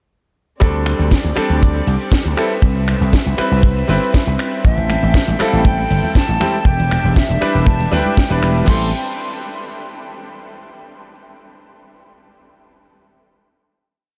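At 0.6 s a cosmic, groovy nu-disco drop in A minor at 119 BPM begins: a dry, dark 70s drum kit drives a four-on-the-floor kick with a fat snare, and an overdriven house kit adds cracking snare, metallic hats, snaps and shaker. Up front, a punchy slap bass plays a dotted-rhythm line, while a brilliant grand piano plays syncopated chord stabs with sidechain pumping and a diffuse delay, and a soft-attack chamber string section floats a sustained, pumping pad in the background. From 4.6 s a hollow, airy concert flute with vibrato brings hook phrases through its own diffuse delay, joined by very quiet shaker and congas, before the groove resolves on a final Am7 chord at 8.7 s.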